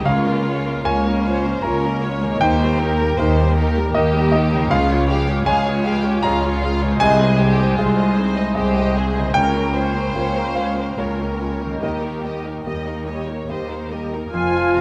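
Cinematic, emotional film score in a rubato 3/4 at 69-79 BPM, longing and sorrowful, where an up-front grand piano plays accompaniment alongside veiled, con sordino strings (a lush symphonic violin section carrying the melody, a chamber violin second line, violas, and cellos and double basses on the bass) while a very quiet ringing harp plays arpeggios, and at 14.3 s clarinet, hollow flutes, oboe and mellow French horns enter briefly as the clip is cut off, all in a moderate scoring-stage reverb.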